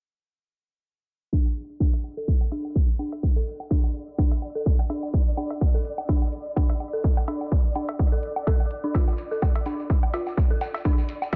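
An up-front, punchy electronic kick, overdriven and re-recorded in a large room, anchors this hypnotic, cool minimal techno excerpt at 126 BPM in 4/4 with a 55% sixteenth swing, entering at 1.3 seconds together with an eerie, inharmonic FM synth bell riff between D4 and A4, given chorus, sidechain pumping, a low-pass filter and dub echo, plus tape-hued analog cowbell and woodblock trailing dub echo. A faint overdriven electronic hi-hat sits in the background, a flickering, granular texture on D5 drifts in at 3.9 seconds with built-in reverb and pumping, and a grainy, mellow acoustic shekere appears at 8.9 seconds. Filter sweeps run across the drums and synth bell throughout a dry, low-pass-filtered mix.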